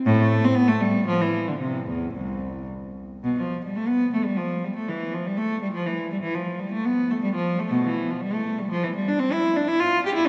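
A single bowed cello, dark and reedy with a gut-string, period-style tone and a smooth top, sits up front from 0.1 to 10.3 seconds in this serene, flowing baroque-style suite movement in C major, moving through a rubato 3/4 at roughly 105-127 BPM with a repeated opening idea, all bathed in the long, wet reverb of a church.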